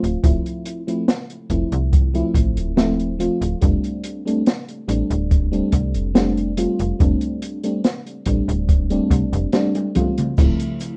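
A slow, straight 4/4 groove at 71 BPM in F major anchors this faded, woozy vaporwave excerpt, cut from a longer piece, with an open jazz drum kit of cabasa, hi-hat, snare, toms and dark cymbals, plus a boomy, rolled-off kick, all carrying vintage 12-bit sampler grit and a drum fill from 9.7 to 10.4 seconds. A snappy, metallic slap-like FM bass sits up front while a soft, round FM electric piano, bathed in lush chorus and tape echo, moves from Dm9 to F69 and back. The rough home-demo mix has light reverb and a cassette-tape haze.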